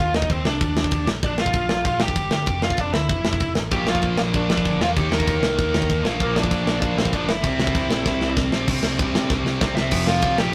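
Punk rock with a rebellious, upbeat drive, this short cut opens with a smooth, dark overdriven lead guitar carrying the melody over a growly, punchy picked bass and a tight metal drum kit with bright cymbals and a tight kick. At 3.7 seconds a biting, double-tracked rhythm guitar joins with a riff, thickening the chords as they move from Bb through Eb and C, while drum fills at 8.1 and 9.3 seconds push into a brief closing section that lands on F5. The sound is rough and rehearsal-room raw, with tube saturation and a moderate studio reverb.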